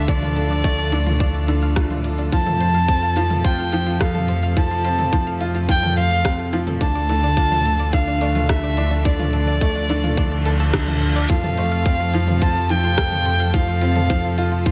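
Luminous and hopeful, this excerpt from a longer piano and strings electronica piece in F major moves at 107 BPM in a straight 4/4, with a dark, woody violin melody up front over hushed chamber strings, a worn, slightly detuned upright piano riff with tape echo, a deep, rumbling detuned saw bass with sidechain pumping, a very quiet analog pluck arpeggio, a tight electronic kick, an organic electronic kit of crisp hats, rim clicks and toms, and a reverse cymbal at 10.4 seconds, all moving between D minor and F in light reverb.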